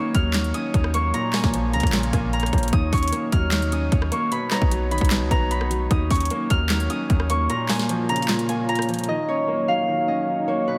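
A half-time trap beat at 151 BPM in 4/4 drives this brooding, menacing hip hop fragment in Eb minor, cut from a longer piece. The overdriven electronic drum kit sits up front with a hard-clipped kick, sharp snare, bright hi-hats, handclaps and rim clicks. A deep, boomy 808-style bass with a sine tone, a noise layer, a fast attack and a decaying envelope anchors the low end until 7.5 seconds, after which the kick also drops out, and the drums stop at 9.1 seconds. Above them, a fingerpicked Celtic harp carries the melody, acoustic and ringing near the front through an analog delay, while a grand piano with short sustain supplies accompaniment. A warbling, nostalgic lo-fi pad of detuned sawtooth and triangle tones holds sustained chords with a slow attack, long release, chorus and its own reverb, moving through Ebm7, Bbm and Badd9, and the dreamy mix is soaked in church reverb, leaving harp, piano and pad alone in the closing seconds.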